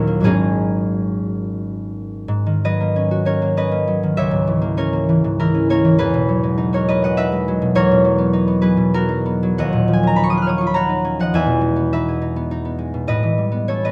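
Close, detailed microphones set a concert harp up front in a moderate recital hall, its ringing, fingerpicked tone carried by a reverb with a 1.7-second decay. This brief excerpt, cut from a longer classical solo harp piece, has a gentle, mysterious mood. It is in G# minor and 3/4 time, with a rubato feel that moves between 81 and 107 BPM, and the instrument is tuned to A4 = 437 Hz. The harp plays alone throughout, covering a span from G#1 to F#6 with an acoustic, warm sound. It opens on a G#9sus4 chord, and a new section begins at 2.3 seconds on G#m11. From there the harmony moves through C#m6, Emaj9, D#m9 and Emaj7 before arriving on A9 at 13.1 seconds.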